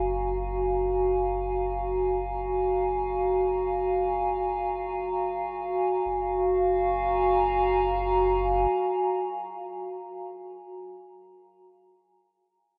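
Drenched in a lush, wet hall reverb, this short excerpt of peaceful ambient music floats in free time in G-flat major. A warbly, tape-like pad sits up front, holding a Gbmaj9 chord with a detuned, nostalgic lo-fi tone softened by chorus. It sounds until 10.3 seconds, while beneath it a deep, round sine sub bass on a low G-flat fades out and stops at 8.7 seconds.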